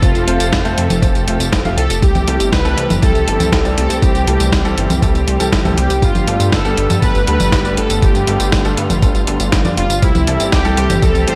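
Set in digital ambience, this romantic, playful italo disco excerpt pairs a bold, detuned analog synth brass melody with a glossy, chorused synth bass, a gritty, thumpy electronic kick, and a dusty sampler-style kit of congas, hi-hat, snare and tambourine in gated reverb, while a dark, lush string section and a worn baby grand piano's stabs sit in the background.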